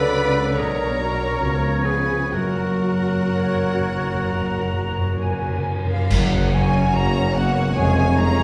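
This serene, lyrical slow romantic movement for symphony orchestra opens with a lush violin section carrying the melody, joined by a brighter, more distant second violin line, a warm oboe, a roomy clarinet, smooth violas, and mellow French horns holding chords in the background. Ringing harp arpeggios, focused double basses and soft-attack cellos complete the opening, and the whole passage moves with rubato in a reverberant hall. At 2.3 s, soft-mallet timpani enter with a fill alongside a cymbal swell, clash cymbals and concert bass drum, and crisp, airy flutes join at 3.3 s; at 6.1 s a close-miked tuba arrives beneath a full-band accent as the music moves into a new section.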